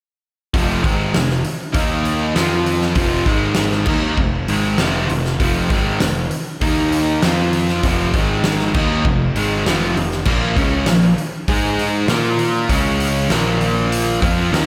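Big and arena-sized, with concert-hall reverb around it, this swaggering, anthemic hard rock fragment at 99 BPM pairs an up-front, double-tracked overdriven guitar riff with slapback echo, moving through F5, Eb5 and Ab5 before shifting to Bb5 and Db5, over a punchy, fuzz-soaked picked bass and a huge acoustic drum kit with a fat snare, boomy kick and bright crash and hi-hat.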